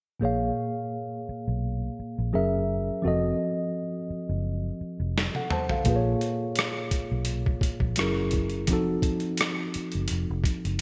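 A light 16th-note swing at 85 BPM carries this soulful, sensual neo-soul R&B excerpt, with a worn, slightly out-of-tune tine electric piano up front and a dark, round, foam-muted fingered bass moving through A#m7, F#9 and F7b9. At 5.2 seconds a drum fill brings in a gritty, pitched-down boom bap sampler kit with a thumpy kick, medium-tuned snare, rim click, hi-hat and toms, compressed and re-recorded in a large room. The whole sits in a lush hall reverb with bright 1980s-style digital production.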